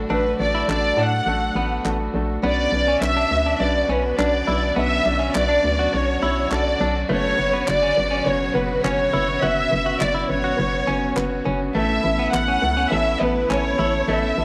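Bathed in a moderate spring reverb, this earnest, bittersweet piece of piano-driven pop in B minor moves at 103 BPM in a straight 4/4, cut from a longer piece. A clear concert grand with long sustain carries the accompaniment over a hollow, bouncy FM bass sitting up front, while a lush studio string section holds sustained chords in the background and a clean, compressed electric guitar recorded direct picks a riff. Up front, a dark, woody symphonic violin section sings the melody with vibrato as the harmony moves from D to Bmadd9, F#sus4 and Aadd9, and crisp, close group handclaps enter at 0.7 seconds.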